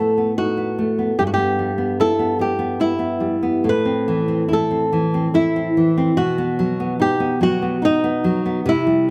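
Closely miked with light reverb, this short passage from a longer romantic guitar duo in 3/4 sounds intimate and detailed, its elegiac, yearning mood unfolding with a rubato feel. Up front, a fingerpicked flamenco guitar with fresh strings carries the melody in its middle register, while a full-bodied nylon-string guitar, also fingerpicked and up front, supplies a deep classical accompaniment where finger squeaks are audible. The harmony moves from B7/A through Em/G and Am before settling on B at 6.2 seconds.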